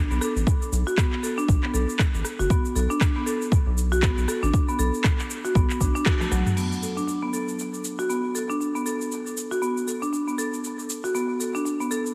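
Afro house in B minor at 118 BPM with a 16th-note swing, hypnotic and driving, built on a woody, up-front marimba playing arpeggios through sidechain pumping, a low-pass filter and dub echo across the whole 12-second excerpt, over Bm7 and Asus24 chords. A round, nasal analog bass with a filter pluck pumps beneath it and stops at 6.4 seconds, while a deep, overdriven electronic kick drives the first half alongside an overdriven afro-pop kit of crash, handclaps, rim clicks, shaker and toms. A drum fill and band accent at 6.1 seconds lead into the second section, where the marimba and kit continue, all framed by light digital ambience and a heavily compressed, radio-like sound.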